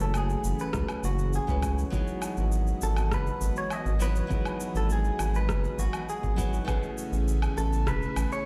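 A straight, relaxed pulse of overdriven electronic shaker, woodblock and rim click, joined at 0.7 s by a deep, overdriven electronic kick in the background, carries this sunset chillout excerpt, where a twangy, compressed clean electric guitar melody with digital delay rides over a fingerpicked nylon-string guitar accompaniment with tape echo, an airy, breathy pad with chorus holds detuned chords further back, and a round, dark analog bass sits up front through F#m9, Emaj9 and Amaj9, with the drums re-recorded in a large room.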